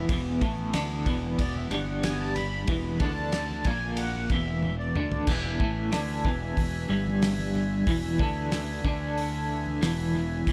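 The recording is dry, with little reverb, yet echo-heavy, giving this psychedelic rock excerpt a hypnotic, trippy cast over a straight 4/4 feel. Up front, an electric guitar through a small old amp plays a bright, twangy, slightly broken-up riff, double-tracked and colored by tremolo and analog delay. Beneath it, a fingered electric bass carries a punchy, overdriven fuzz tone. A cloth-damped, thuddy drum kit from a small room adds a fat snare, tight kick and dark cymbals, with its own analog delay. A reedy, sweet accordion with light tremolo tuning holds sustained chords throughout and takes a solo over the opening 5.3 seconds, closed by a drum fill before the next section begins. Congas with a thick-skinned, damped sound join at 0.6 seconds, played with soft hands and barely audible.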